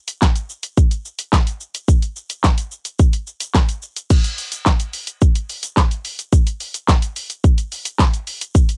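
Pop drum excerpt at 108 BPM in a straight 4/4, confident yet bittersweet, where an electronic, layered house drum kit with a punchy kick, punchy snare, bright hi-hats, handclaps, shaker and crash cymbal sits up front from 0.1 to 8.8 seconds, carrying a cassette tape character in a dry, home-recorded sound that shifts into a new section at 4.1 seconds.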